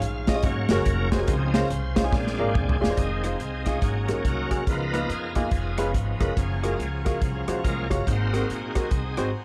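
A swung 4/4 at 142 BPM drives this reverent, soulful uptempo gospel cut in Db major, where a shouting tonewheel organ with slow rotary swirl and chorus vibrato takes the lead over clear grand piano accompaniment, a faint chiffy pipe organ playing flute stops in the background, a growly pizzicato upright bass and a punchy, up-front country drum kit whose fill at 2.1 s leads into a second section at 3.0 s, all moving through lush chords like Ab9sus4, Dbmaj7 and Gbmaj9 in a dark, small-room mix with light reverb.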